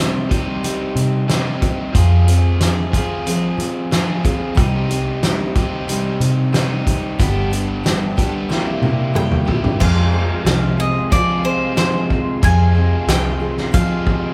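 A straight 4/4 pulse at 92 BPM carries this reflective, dusty folk-rock and heartland-rock excerpt in C harmonic minor, where a loose, gritty drum kit with a fat snare and punchy kick sits up front beside a dark, round, foam-muted electric bass, a bright, double-tracked overdriven electric guitar riff and a full-bodied jumbo acoustic guitar picked in the background with fresh strings and finger squeak, before a drum fill from 8.5 s ushers in a double-strung bowl-back mandolin melody at 9.2 s and a very quiet, clean tonewheel organ with key click and slow rotary vibrato at 9.8 s as the chords move from Cm through G and C7 to Fm, the whole band captured live in a wet, large studio room.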